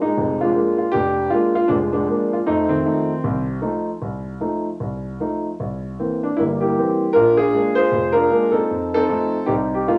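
A grand piano plays alone and up front with a natural, warm tone from F1 to C5 in this sophisticated, playful solo jazz fragment at 154 BPM in 4/4, swung and loosely rubato, moving through Bb7, F7 and C7 chords with a slightly flat tuning of A4 = 437 Hz, heard through cassette tape, moderate spring reverb and the intimate ambience of a small room in a home recording.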